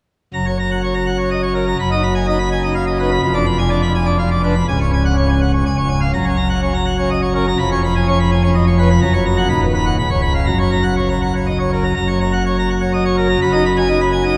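This classical organ toccata in a triple metre is brilliant and jubilant, a short fragment cut from a longer piece. A solo pipe organ on a full plenum with mixtures plays from 0.3 seconds to 14.4 seconds, its baroque voicing spanning C#1 to B5. The sound sits up front, and each note speaks with a crisp chiff. The harmony opens on a bright major chord, passes through a diminished seventh and a suspended chord, and resolves home before the opening material returns at 12.0 seconds. A cathedral reverb with a 6.0-second decay wraps the organ in the long, resonant ring of a church or concert hall.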